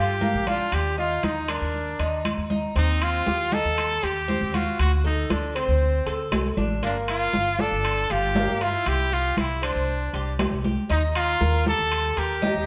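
A straight 4/4 pulse at 118 BPM drives this nostalgic, warm excerpt of Cuban son and guajira in G minor: a bright, punchy trumpet with vibrato sings the melody up front over the picked, metallic double strings of a Cuban tres playing arpeggios and a woody, thumpy gut-string upright bass played pizzicato, while close, dry congas come in at 0.2 seconds and ringing metal-shell timbales at 0.5 seconds, the band playing live together in a stone room with a lingering reverb.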